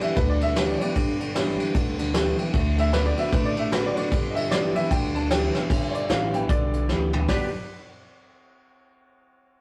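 A twangy, bright electric guitar riff with spring reverb drives this upbeat, retro rockabilly clip at 152 BPM with a swung feel in G major, joined by a woody, slightly detuned upright piano carrying the melody, a full-bodied steel-string acoustic guitar picking quietly in the background with audible finger squeak, a growly, thumpy upright bass entering at 0.2 seconds, and an up-front brush drum kit that adds fills at 5.5 seconds and near the end, all moving over a simple G to D7 and back to G progression in a rough, saturated rehearsal-room sound.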